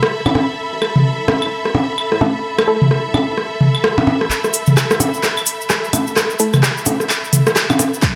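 Set at 129 BPM with a 16th-note swing, this sparse, hypnotic minimal techno excerpt opens on an overdriven click kit of claves, blips, rim clicks and toms over clear, bowed strings with sidechain pumping, joined at 0.3 seconds by a round, deep analog bass, as crisp detuned wavetable stabs with analog delay flash at 2.2 and 5.9 seconds, before a house kit with metallic hats and handclaps joins a grainy tube shaker at 4.3 seconds for a build-up and drum fill with a filter sweep on the stab, capped by a punchy electronic kick at 8.0 seconds, all in an echo-heavy chamber reverb.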